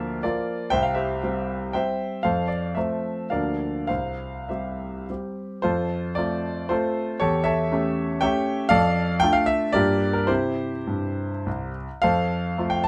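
A clear solo grand piano, heard up close with audible action noise and long sustain in light reverb, plays a graceful, rustic romantic dance in 3/4 and F major, its dotted rhythms flowing with rubato between 97 and 131 BPM across a range from C2 to A5, moving at 5.6 seconds into a second section that passes through A7/E and Gm7 before reaching F at 12.0 seconds in this brief cut from a longer piece.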